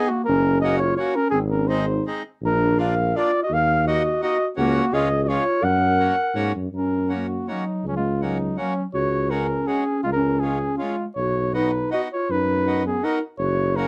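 Festive and bouncy, this alpine folk dance-band tune in F# major moves in a rubato 3/4 at 164 BPM, with an up-front flugelhorn carrying the melody in a classical style while a dark, distant clarinet sings a roomy second line beneath it. A reedy, full accordion in dry tuning fills out the accompaniment, and from 0.3 seconds a warm tuba with light vibrato anchors the bass. Chords step through F#, G#, A#, D#m, F#/C# and C# before returning to F#, reaching a C#sus4 at 8.9 seconds and a B chord at 11.2 seconds, all within a dark production touched by light reverb.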